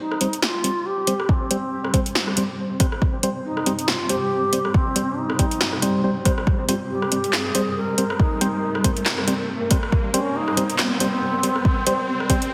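Brooding and heavy, this deep dubstep excerpt with a half-time swing is a single build-up where a breathy, reedy ney carries a distant melody through low-pass filtering and dub echo, over a cloudy granular pad and hollow, wave-folded organ stabs that both undergo a filter sweep, while a background riser climbs throughout, an overdriven deep house kit with a punchy snare and metallic hats drives from the start, and an up-front overdriven electronic kick enters at 1.3 seconds, all set in a wet echo chamber with a heavily compressed radio sound.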